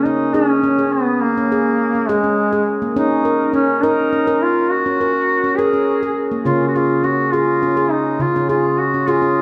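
This gentle, meditative world piece opens with a duduk and a handpan sounding together from the very start, and both carry on to the end of the 9.4-second fragment cut from a longer piece. The duduk leads with a folk-style melody, its vibrato and scooped notes heard up front yet with a distant, roomy character, colored further by tape echo. Beneath it, the handpan plays ringing arpeggios with sharp finger strokes, its stainless-steel tone bright and airy. The music moves in a slow, straight 6/8, with the harmony resting on C#5 before shifting to C# at 6.5 seconds. A wet recital-hall reverb surrounds the pair, giving the meditative tuned percussion and reed a spacious, unhurried glow.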